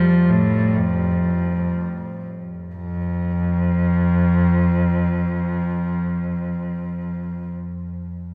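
A single bowed cello carries this serene, flowing classical piece in the manner of a baroque suite movement for unaccompanied cello, its rich, smooth tone shaded with vibrato and kept even throughout. The player stays in the instrument's lower range, between F2 and F3, and sounds from the start to 7.5 seconds. The line moves in free time, slowing over the opening phrase before a second passage begins at 2.8 seconds and runs to 6.8 seconds. Although the cello sits up front, it also carries a distant quality, wrapped in a long, wet cathedral reverb that lets each note hang in the air. This short cut from a longer piece feels calm and contemplative, like a quiet meditation in a vast stone space.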